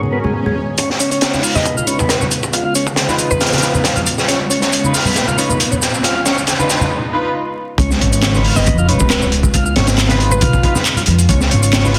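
Breakbeat excerpt with a raw, swaggering swing, where a crunchy, up-front breakbeat kit with a tight kick and high-tuned snare plays alongside overdriven electronic shaker and handclaps, distant low-tuned congas, a smooth tonewheel organ riff through slow rotary speaker and delay, dark bowed string stabs with vibrato and portamento, a lush detuned unison pad pumping in the background, and a round, woody mallet-like synth pluck with an AM radio tinge, while background swell, riser and sub drop effects mark a filtered build-up and brief break before a growly pizzicato upright bass enters at the drop at 7.8 seconds, all under vinyl crackle and a dense, heavily limited master.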